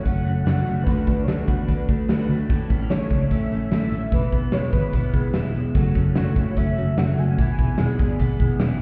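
Bright and nostalgic, this short jangly indie pop excerpt sets a velvety, detuned synth lead melody with chorus, plate reverb and delay over a full-bodied picked dreadnought acoustic guitar, twangy lo-fi electric guitar arpeggios bathed in lush chorus, a round foam-muted vintage bass and a punchy, dark rock drum kit, all heard muffled as if through a wall in a stone room.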